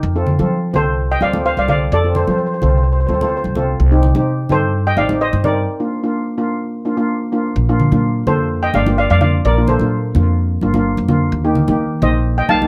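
Calypso at a bright 128 BPM in straight 4/4 and Bb major, this short cut from a longer piece feels sunny and festive. A woody, thumpy pizzicato upright bass on steel strings opens at 0.0 s, and a mellow steel pan playing double seconds with soft rubber sticks joins almost immediately as boxy accompaniment. Congas with thick skins, medium tuning and hard hands add warm acoustic percussion. The lead pan enters at 0.8 s, a dark, smooth, shimmering melody struck with medium rubber sticks and sitting up front alongside the bass. The harmony moves through F, Cm and Bb, pauses for a break at 5.7 s, then restates the section over Bbadd9 and Eb, all set in a moderate studio ambience.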